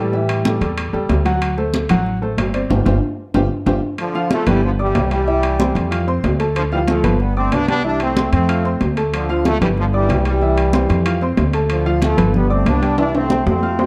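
A straight 4/4 groove at 187 BPM drives this festive, sunny salsa in C major, a short passage cut from a longer piece. Up-front pizzicato upright bass with a woody, thumpy gut-string tone anchors the bottom, while a clear upright piano with short sustain fills in the accompaniment. High-tuned, damped congas sit bright and saturated in the background, joined from 0.3 seconds by ringing metal-shell timbales. A brilliant, tight trombone section with light vibrato and plate reverb sounds briefly at the opening, then returns at 4.0 seconds to carry the melody after a band accent, as the harmony cycles through Dm, G, C and F. A drum fill from 13.0 seconds closes the passage, and the whole mix has a dark, warm production in a large studio room.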